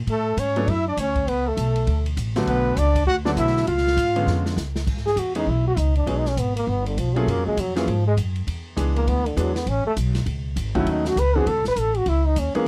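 A woody, pizzicato upright bass opens this cool, late-night small-group swing and bop passage at 200 BPM, soon joined by a trombone melody with vibrato, a clear trumpet second line with scooped notes that stops at 4.5 s, an airy drum kit with dark cymbals and a boomy kick, and bright, short-sustained upright piano accompaniment, before a drum fill leads into a trombone solo in C# minor from 4.9 s, heard in a dry, close 1970s-style studio sound.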